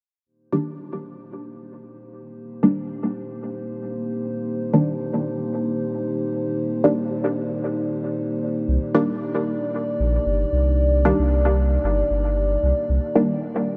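A huge ambient reverb with a long 7.2-second tail hangs over this hazy, meditative dub techno passage, cut from a longer piece and set in C minor at 114 BPM in a straight 4/4. A filtered dub chord stab opens at 0.5 seconds, its muted, detuned sawtooth plucks short and up front, smeared by chorus, phaser and dub echo as a filter sweep runs across it. A dark analog pad enters at 1.5 seconds with slow-attack sustained chords, a moody square-and-saw tone with a sub octave and a moving notch, carrying its own filter sweep and chorus. The harmony rests on a single Cm7 chord throughout. At 8.7 seconds a round, sine-based sub bass arrives, deep and mellow, sitting low beneath the chords until it drops out near the end.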